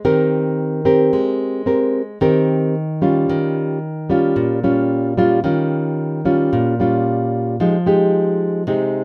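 Intimate and melancholic, this nine-second bossa nova passage, cut from a longer piece, features a solo nylon-string guitar at a straight 111 BPM in 4/4, its classical, thumb-plucked tone sitting up front with audible finger squeak in a small, moderately reverberant room as it moves through Abmaj9, Eb9 and Fm9.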